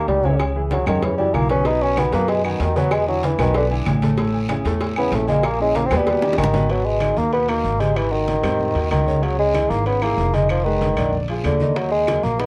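A warm bassoon with light vibrato takes a classical-style solo up front at a driving 190 BPM, over smooth, vintage grand piano and a dark, woody pizzicato upright bass with steel strings, opening this sophisticated Afro-Cuban jazz excerpt in G# minor. In the background sit low-tuned congas played with soft hands, tight, high-tuned cowbell and bongos that drop out at 6.7 seconds after a drum fill and return at 11.8, ringing, distant timbales and agogo bells, and claves, while a raspy, saturated guiro enters at 1.7 seconds. The recording sits in a small room and carries the worn, warbly pitch drift of old cassette tape, with the second half turning through G#m9, C#madd9 and A#7 before landing on D#m.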